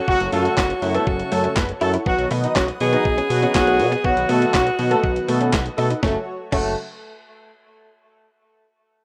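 Dance-pop at 121 BPM in F# dorian, confident yet bittersweet, this short cut moves from F#m to B at 2.1 s. An edgy, punchy alto saxophone with light vibrato and delay carries the melody until 5.5 s beside a mellow, tightly octave-doubled horn section, while a fat, detuned sawtooth analog bass and glossy, chorused retro synth keys pump under sidechain. A crisp 8-bit drum machine with a thumpy kick drives the groove, and a clean, direct-recorded electric guitar riff sits in the background, joined by a very quiet, airy unison pad and a barely audible downlifter, in a rough home demo mix with a small, wet room reverb.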